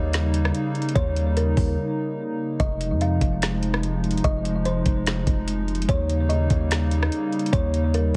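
A long, deep 808-style bass sits up front with a sine-like, mellow tone under an ethereal, hazy slice of atmospheric cloud-rap at 146 BPM in a half-time feel, moving through Eb7 and Fm7. A hollow, flute-like pad holds dark, slow-attack chords with chorus and sidechain pumping, while a woody, fingertip-plucked kalimba plays a soft melody through a low-pass filter and delay. A smooth R&B kit with a knocking kick, woody snare, metallic hats and rim click enters at 0.1 seconds, with a break arriving from 1.8 to 2.6 seconds, all set in light digital ambience with a heavily compressed, radio-like sound.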